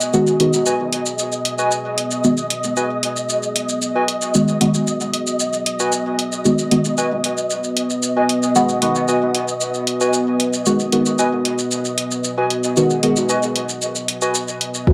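A dry, gritty recording in a moderate digital room carries this hypnotic, nocturnal dub techno excerpt at 114 BPM in G# minor, resting on a single G#m7 chord, where a soft, detuned chord stab is colored by chorus, phaser and dub echo, a deep, moody ambient pad and a flickering granular texture breathe under sidechain pumping, warbling lo-fi synth keys spin a nostalgic riff through echo, a tape-tinged electronic shaker and hi-hat tick throughout, and an overdriven electronic kick lands only at 14.9 s.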